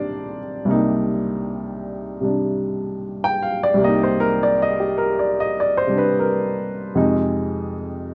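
A dark, warm studio sound with moderate reverb frames this brief, late-night solo jazz excerpt in C minor, where an up-front baby grand piano with a natural tone swings loosely at 77 BPM with rubato across a range from C2 to G5, moving from Cm7 to Fm7 at 7.0 seconds before the cut at 8.1 seconds.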